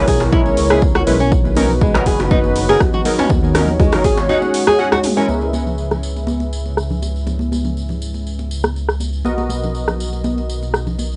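Heard through a cassette home recording with a dulled top end and a short, tight booth ambience, this brief cut from a longer afro house track drives at 121 BPM in C# dorian with a lightly swung, spiritual feel. A deep, moody detuned pad holds sustained chords under round analog key stabs treated with chorus, a low-pass filter and tape echo; the keys' filter sweeps from 5.3 seconds onward as the harmony returns to C#m7. Up front, a rumbling, beating saw bass anchors the low end, and the pad, keys and bass all carry sidechain pumping. In the opening half, a warm nylon-string guitar plays fingerpicked classical arpeggios with audible finger squeak and tape echo, a hard-handed djembe with metal rattles sits in the background until 5.0 seconds, and a punchy, overdriven electronic kick runs until 4.2 seconds, with the band hitting an accent at 4.9 seconds. Throughout, a layered deep house kit adds metallic, overdriven hats, rim clicks and filtered toms, joined by bright high-tuned congas in the background and a faint jingly tambourine.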